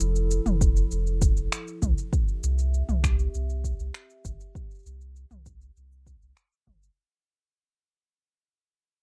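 A round, sine-toned sub bass sits up front in this short folktronica fragment, sustaining deep notes under a filter sweep that runs the full 7 seconds. The mood is delicate and pastoral, moving at 99 BPM in a straight 4/4 as the harmony shifts from Fmaj7 to C at 2.1 seconds. A warbling, nostalgic pad holds mellow chords with a slow attack and long release, its lo-fi, wave-folded tone softened by chorus and its own reverb. An electronic kit of cabasa, finger snaps and toms provides the percussion, and a deep electronic kick enters at 0.6 seconds and sits prominently in the mix. The sound is dry and rough, like a home demo, and the whole passage fades out from the start, as if cut from a longer piece.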